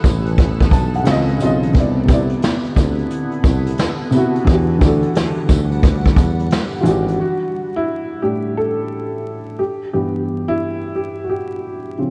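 A dreamy, reverb-soaked mix with vinyl crackle frames this melancholic, nostalgic lo-fi hip hop excerpt at 88 BPM in 4/4, its sixteenths swung. A dark, worn upright piano sits up front, woody and slightly detuned with audible action noise, carrying the accompaniment across C#maj9, Cmaj9 and Em9 and slipping in a fill from 0.4 to 1.7 seconds. Beneath it a breathy tuba plays a mellow, scooped bass line with vibrato, while a vintage brush kit, punchy in the kick and rolled-off on top, brings sampler grit and a small-room feel. A granular cloud pad hovers in the background, blurred and ring-modulated with a slow attack, and a jingly, saturated tambourine glimmers faintly behind. At 7.2 seconds the tuba, drums and pad stop, and the piano plays alone through A7sus4 and G6 until 12.1 seconds.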